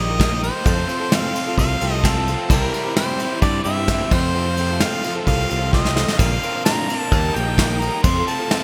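A straight 4/4 pulse at 130 BPM drives this dusty, wistful folk rock and heartland rock passage. Soft brushes on an up-front acoustic kit, with a medium-tuned snare, punchy kick, ride and crash, enter at 0.2 seconds under gated reverb and play a fill at 5.7 seconds. A growly, direct electric bass anchors the low end until 8.2 seconds, while a close-miked harmonica carries the pop-style solo melody up front with light vibrato and scooped notes. Further back sit a boxy, picked old ladder-braced acoustic guitar treated with lush chorus and a biting, double-tracked overdriven electric guitar riff. A very quiet, clear tonewheel organ holds sustained chords through a slow rotary speaker as the harmony moves from Eb and F through C to Bbadd9, all set in a moderate hall with small room ambience and bright 1980s-style digital production.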